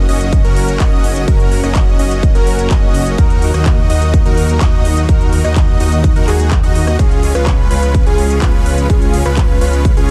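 Festival progressive house at 126 BPM in F# major, anthemic and euphoric, moving from F# to D#m to C# across this 10-second cut from a longer piece. A punchy, up-front electronic kick enters at 0.3 seconds over crisp hi-hats, handclaps and rim clicks, while a thick, menacing detuned saw bass, a huge, lush supersaw chord riff and a dark unison lead arpeggio all pump with sidechain, the riff and lead trailing tape echo and the lead carrying a cassette-tape tint. A smooth, bowed studio string section holds sustained chords in the background, and the mix is dry with lossy compression artefacts.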